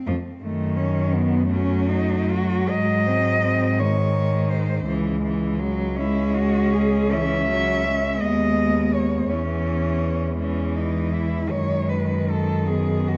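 Classical and elegiac, this passage for a cello ensemble of four players moves with rubato in a slow 12/8, around 49-57 BPM in dotted quarters, in C# minor, with a yearning harmony that passes from D#m7b5/F# through G#7 to C#m and settles on F#sus4. The melody cello sits up front with a soft attack, vibrato and expressive portamento, carried over a smooth, even second line and accompaniment, all three rich in tone. Beneath them a warm, up-front bass cello anchors the bowed texture, and the dark production sits in a wet recital hall reverb.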